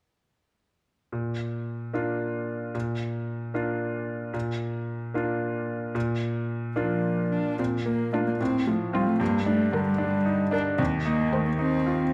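A bright, brilliant grand piano sits up front with audible action noise and long sustain, carrying the accompaniment of this graceful, lively classical-period piano trio movement in Bb major, taken quickly at 74 dotted-quarter beats per minute in 6/8, while a close, woody cello enters at 6.8 seconds with a vibrato second line played sul tasto and a dark violin, set in the background, adds a brief bowed melody from 8.1 seconds, all in a moderate stage reverb within a dark, warm production cut from a longer piece.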